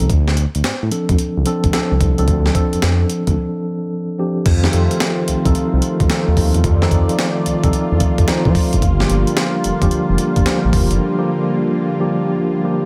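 A mellow, clean tine electric piano, a dark, gliding sawtooth synth bass with portamento and a gritty, compressed breakbeat-style kit with a thumpy kick open this punchy, slick new jack swing excerpt with a swung groove and a short break at 3.4 seconds, before a bold, airy, detuned brassy analog pad with chorus and a filter swell enters at 4.5 seconds, and the bass and drums stop at 11.0 seconds, leaving the electric piano and pad under light reverb.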